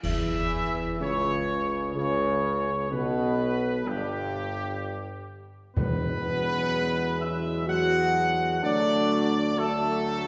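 Classical ceremonial fanfare, solemn and regal, moving at a slow 63 BPM in 3/4 and cut from a longer piece. A mellow trumpet section carries the melody up front with light vibrato, over sustained chords from a dark French horn section in the background and a trombone section, while a warm tuba anchors the bass through C#m, G, Eadd9 and D. Clash cymbals and concert bass drum with dark cymbals mark an opening accent until 1.9 seconds, and round soft-mallet timpani enter close and dry at 5.8 seconds against the distant, roomy trumpets, horns and tuba in a church or concert hall setting.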